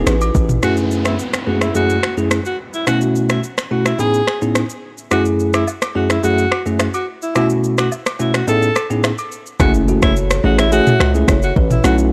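A bright alto saxophone with vibrato carries the pop-style solo melody from 0.6 seconds over a bell-like tine electric piano, clean and up front with a phaser, in this smooth, hypnotic afrobeats excerpt at 107 BPM in F# dorian, cycling through chords such as F#m7, B7sus4 and Amaj9#11. An electronic afro-pop kit with a deep kick, finger snaps, rim click, shaker and toms drives the straight 4/4 groove, while agogo bells and woodblock sit in the background from 5.1 to 9.3 seconds. At 9.6 seconds a punchy, saturated 808-style bass returns with a very quiet impact, and a woody, ringing kalimba riff joins it. The whole piece carries a dry, gritty hardware sound in a digital ambience.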